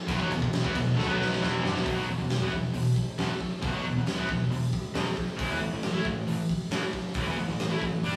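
Energetic and powerful, this short hard rock cut at 136 BPM drives a compressed distorted electric guitar riff over a high-gain guitar in the background, a very quiet double-tracked overdriven guitar that drops out at 1.9 s, a growly picked bass and an up-front big rock kit with a fat snare and punchy kick, whose fill from 1.0 to 1.9 s leads into a new section moving from E5 to Asus2 at 5.4 s, all caught in a rough rehearsal-room recording with saturation and studio reverb.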